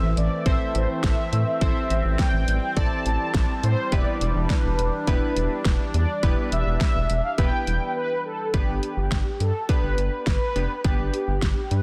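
Synth-pop with a driving, melancholic feel, cut from a longer piece, where a mellow, brassy synth lead carries the melody over chorused analog keys, a resonant, phased pad holding chords until 8.5 s, a rubbery square-wave bass and a punchy, up-front electronic drum kit, moving from Am to Em7 and arriving on G after a brief silent gap, in a dense, heavily limited mix with light reverb.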